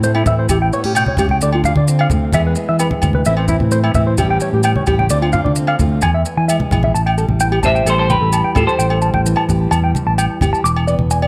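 A straight, danceable 4/4 groove drives this short cut from a longer highlife guitar-band piece. Close, grainy maracas, ringing agogo bells and low-tuned congas struck with hard hands run from the opening moments. Underneath, a dark, round fingered electric bass sits up front, while a boxy parlour-style steel-string acoustic guitar, plugged in and fingerpicked, fills out the accompaniment lower in the mix. Above them, a compressed, twangy clean electric guitar plays arpeggios through an analog delay. The harmony cycles through A7, Dm7, E and Am before settling on Am7 at 6.9 s, where a second section begins. A semi-hollow electric guitar with a clean, hollow-body tone enters to carry a brief melody from 7.6 to 9.6 s, and light reverb lends the band a warm feel.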